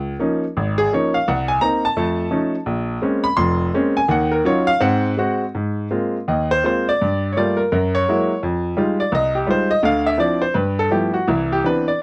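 Swung eighths at 167 BPM in 4/4, loosened by rubato, drive this swinging, warm solo jazz piece in Db major, cut from a longer work, where a clear baby grand piano with a natural, up-front tone and short sustain spans F1 to C6 over two matching passes (the second beginning at 5.6 seconds), moving through rich extended chords from Db69 and Bbm9 to Ab69, Gb9 and a closing Cmaj9 in a dry, close 1970s-style studio sound with light reverb.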